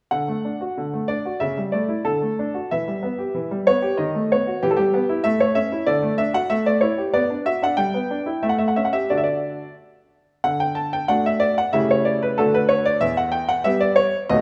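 Set in a 2/4 metre with a flexible, rubato feel, this cheerful and graceful classical-period sonatina excerpt is played by a solo baby grand piano whose brilliant, up-front tone sounds natural and clear across its span. Heard in a moderate recital hall reverb, the opening section runs to 10.4 seconds and moves through a tidy chain of chords before closing on D, and a new section then begins and carries on until the cut at 14.4 seconds.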